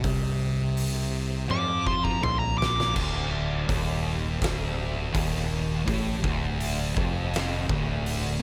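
A lightly reverberant, up-front mix opens this ominous, brooding stoner and doom metal excerpt at a slow 82 BPM in D minor, with a thick, double-tracked fuzz guitar riff and a growly, bright fingered electric bass with overdrive sitting over an oversized, low-tuned drum kit with a boomy kick, fat snare, dark cymbals and a gritty, pumping stone-room sound. From 1.5 seconds a dark, compressed fuzz lead guitar with digital delay plays a short high melody while the drums play a fill. At 2.9 seconds the harmony moves from Bb5 to Dm as the riff continues into a new section.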